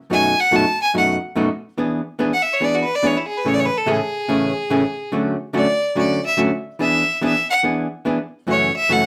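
A bowed fiddle and a miked, amplified archtop guitar begin together at 0.1 seconds in this cheerful, down-home country excerpt, set at 143 BPM in 4/4 with a swung eighth-note feel. The fiddle carries the melody as a solo across the whole passage, played by one player up front with a clear, biting tone, light vibrato and an intense edge, ranging from E4 to A5. Beneath it, the hollow-body electric guitar is picked cleanly and sounds dark, providing up-front accompaniment in a lower register from F#2 to G#4. The harmony moves through B7/F#, E7, Amaj7, Dmaj7 and E7 before landing on F#m7 at 8.5 seconds. A moderate studio ambience gives both instruments a natural sense of room, and the passage ends around 9.1 seconds as a fragment of a longer piece.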